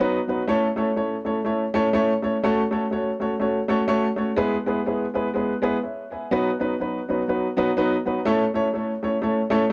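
A dark, woody upright piano plays alone and up front through this short soul fragment, its mellow tone given long sustain and a touch of tape echo. At 124 BPM with a swung eighth-note feel, the joyful, danceable passage moves through A, F#m, E and B before returning to A around 8.3 seconds. Light reverb and a dark, warm production round out the sound.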